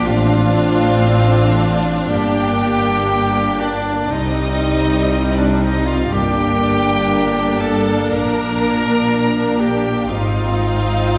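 A reverberant scoring-stage sound, like a church or concert hall, frames this moving, tender cinematic passage for orchestra, cut from a longer piece and played with a rubato feel. A close violin section carries the smooth, vibrato-rich melody, while a bright solo clarinet and a focused second violin section in the background share a second line, and a lush, distant viola section fills in the accompaniment. A warm French horn section holds sustained chords from afar, and cellos and double basses, entering at 0.1 s, anchor the bass beneath harmonies that pass through Gm, Cm, Bb and Ab.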